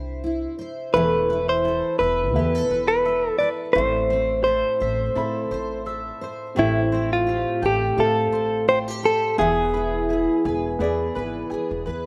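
A clean, compressed electric guitar recorded direct carries the melody up front from 0.9 s, colored by harmonic tremolo, over a reflective, tender acoustic pop groove at 85 BPM with a light swing, where a double-tracked, full-bodied steel-string acoustic guitar with finger squeak and a thumpy gut-string upright bass play from the start, joined by a soft, boxy felt-muted upright piano with audible action noise in the background and mellow, woody mandolin arpeggios, heard in a rough home demo mix with light reverb and small room ambience in this cut from a longer piece.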